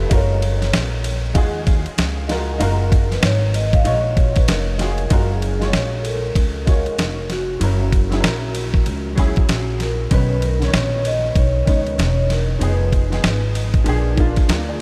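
Cool and warm, this jazz-hop excerpt moves at 96 BPM in 4/4 with a swung sixteenth-note feel, centred in F# major. A soft-mallet vibraphone carries the melody, its ringing metallic tone shimmering with slow motor vibrato and trailed by analog delay, and it takes a solo through the opening 5.1 seconds before dropping out at 13.8 seconds. Underneath, an upright piano adds woody, vintage chords with short sustain and an ensemble chorus, moving from F#maj9 through F#7 and Bmaj9 toward Fm7b5 and A#7. A plucked upright bass with bright steel strings sits up front, joined by a gritty, compressed boom bap kit with a thumpy kick, medium-tuned snare, hi-hat and ride, its pitched-down sampler character giving the groove its weight. Light reverb and a small room ambience frame the sound, and the clip ends at 14.8 seconds as part of a longer piece.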